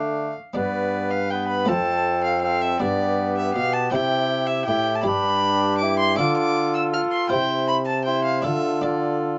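A classical, renaissance-style consort dance in a straight triple metre, this brief cut from a longer piece carries a courtly yet rustic mood. A rich, reedy violin with a gut-string, period-style tone sits close and up front, carrying the melody high above the ensemble. Beneath it, a mellow cor anglais with light vibrato supplies a second line, while a buff-stop harpsichord, close-miked, dry and muted to a lute-like pluck, fills in the accompaniment alongside a soft-attacked bassoon that sounds distant and roomy. A clear trombone, also up front with light vibrato, anchors the bass. The harmony moves between D minor, G, F and C, the main section begins at 0.5 seconds, and light reverb with a softened top end frames the whole consort.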